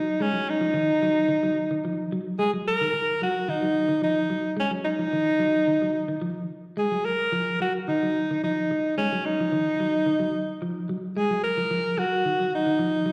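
Heard live through a venue's PA in a wet club reverb, this funky, driving afrobeat fragment puts a bright, pop-style alto saxophone up front, singing its vibrato-laden solo melody through plate reverb and slapback echo, while a clean, picked electric guitar sits lower in the mix, spinning arpeggios coated in spring reverb, plate reverb and slapback echo.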